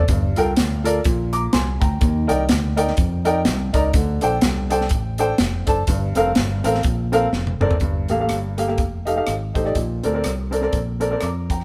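A woody, boxy upright piano sits up front in this fervent yet solemn uptempo gospel excerpt, its short-sustained chords riding a gentle swing over a warm fingered electric bass and an airy, polished acoustic drum kit with a high-tuned snare and punchy kick, the band sharing one lightly reverberant room until a drum fill at 7.3 s carries the music into a new passage at 7.8 s.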